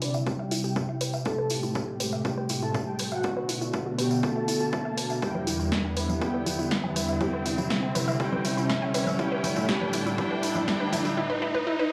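A dry, gritty hardware-recorded fragment of dark, driving melodic techno builds throughout, as filter sweeps move across a round octave-layered synth lead, a smooth supersaw second line, a thick warbling unison pad and a wave-folded unison pluck arpeggio, over brassy, nasal analog synth brass stabs, a punchy analog drum machine with congas, hi-hat and snare, a jingly tambourine, a tape-warm electronic kick entering at 0.3 s and a riser from 1.4 s, everything pumping in sidechain except the tambourine, riser and kick while chords move from C through Am7, Bm and Em7.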